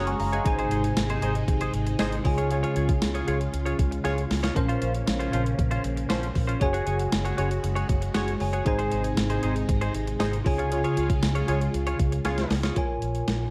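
A light reverb surrounds this 1980s-style pop excerpt at 117 BPM in 4/4, urgent yet nostalgic, with a clean 12-bit drum machine up front, its thumpy kick, medium-tuned snare, hi-hat and tambourine bathed in gated reverb and drum fills near 4.0 and 12.3 seconds. A round, foam-muted fingered electric bass and a bell-like tine electric piano with analog chorus carry the progression from Ab through Db, Bbmadd9 and Gbsus2, while a twangy, direct-recorded clean guitar plays a chorused, delayed riff. A distant horn section adds dark, punchy stabs with light vibrato, and a swirling, phased string machine sustains soft-attack chords in the background.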